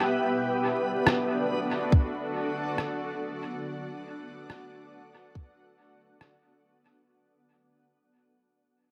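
A tight, tape-warm electronic kick sits up front from 1.9 to 5.5 seconds in this hazy, spacious ambient dub fragment at 70 BPM in D major, arriving after a sampler-style rim click, pitched down and muffled, that enters at 1.1 seconds trailing a dub echo. A cloudy, detuned granular pad holds a sustained D chord in its own reverb, while a reversed, dreamy backwards swelling texture glows brightly beneath it. Vinyl crackle and an echo-heavy digital ambience surround the short cut, which fades out across its whole length.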